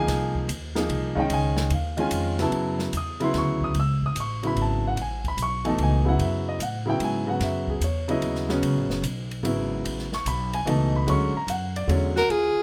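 Lightly reverberant and intimate, this cut from a longer modal jazz piece in F# dorian swings at 147 BPM in 3/4 with an intense, cool mood. An up-front grand piano with audible action noise accompanies a woody pizzicato upright bass and an airy small-room drum kit with dark cymbals and a boomy kick, until a clear, breathy soprano saxophone and a mellow alto saxophone with vibrato enter together at 12.2 s, just before the recording ends.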